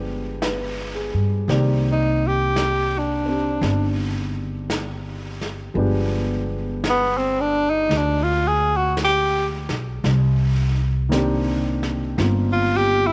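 A small room's light reverb wraps this smoky, intimate jazz ballad excerpt in C minor, moving at a slow 56 BPM in 4/4 with a swung eighth-note feel. Upright bass and grand piano start together at the opening, the bass plucked, woody and up front on steel strings, while the piano sits further back with a natural tone as it comps through the G7b9 and Cm9 changes. A vintage brush kit joins at 0.4 seconds, its dark, smooth snare and hi-hat softened by a rolled-off top and a medium-tuned snare under the brushes. At 1.9 seconds the tenor saxophone steps forward as the featured soloist, carrying the melody in its mid register with a breathy subtone and vibrato. The horn stays present and close throughout, giving the brief passage a late-night, confiding character.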